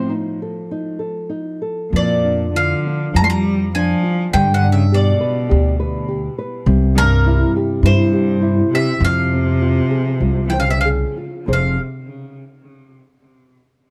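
A bright, picked bowl-back mandolin carries the mournful, longing melody of this fado-style ballad in F harmonic minor, moving freely at around 94-107 BPM, while a rich, bowed cello with vibrato and tape echo sings a second line up front, a small, thumb-plucked nylon-string guitar supplies accompaniment, and a woody, thumpy pizzicato upright bass enters at 1.9 seconds, all captured in a dry, close 1970s-style studio sound in this fragment cut from a longer piece.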